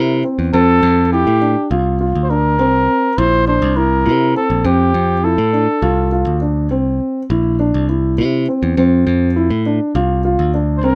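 Set in a straight, uneven 7/8 pulse, this bright and intricate progressive instrumental fragment alternates between C7 and F6 as a growly, up-front picked electric bass anchors the low end, a boxy, intimate baby grand with audible action noise spins dark arpeggios, and a mellow, jazz-style solo trumpet with scooped notes and a smooth top carries the melody until 6.4 seconds before a brief return at 10.8, all in a small room with a rough home-demo sound.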